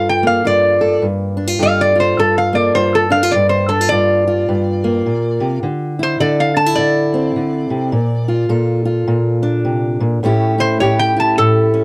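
A lap resonator guitar carries the melody from the first moment, its metallic, nasal slide tone played with fingerpicks and sitting up front, over a fingerpicked steel-string acoustic guitar whose accompaniment shows a touch of finger squeak. This brooding, soulful acoustic country blues duo moves at 104 BPM in 4/4 with a swung eighth-note feel, passing from Gm9 through Dsus2 and Bbmaj7 to an A7 at 10.2 seconds. The sound is dry and close, with light reverb, in the manner of a 1970s studio session, and the excerpt is cut from a longer piece.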